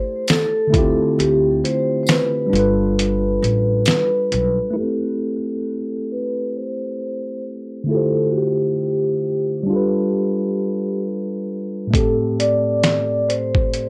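Melancholic and reflective, this lo-fi hip hop piece moves at a slow 67 BPM in 4/4 with a swung sixteenth feel in A minor, cut from a longer piece. A mellow tine electric piano, clean and up front as if heard through built-in speakers, carries the Am7, Dm11 and G7 changes, while a vibraphone played with soft mallets sings the melody with a metallic ring, slow motor vibrato and tape echo, both softened by low-pass filtering and plate reverb. A gritty, compressed sampler-style drum kit sits up front with a thumpy kick, fat snare and hi-hat, overdriven and re-recorded in a small room, joined by a jingly tambourine tucked in the background. A woody, growly pizzicato upright bass with bright steel strings enters at 0.7 seconds, and the kick is muted from 1.2 seconds onward. Bass and drums drop out at 4.6 seconds, leaving the keys and vibraphone to drift through a filter sweep in the second section until the drums return at 11.9 seconds.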